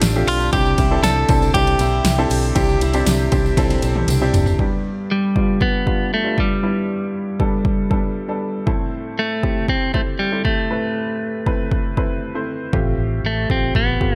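Anthemic and warm, this piano-driven pop piece moves at 118 BPM in a straight 4/4 in G mixolydian, with a clear, woody, slightly detuned upright piano up front and a compressed clean electric guitar carrying the melody. A punchy, overdriven deep house kit with a fat snare and smooth hats drives it, while a round, dark muted electric bass, a picked parlour acoustic guitar riff and a jingly tambourine sit beneath until a drum fill leads into the second section at 4.6 seconds. The bass then drops out and returns at 12.7 seconds as the chords move from Fadd9 and Cadd9 through G and Am, all in a light digital reverb.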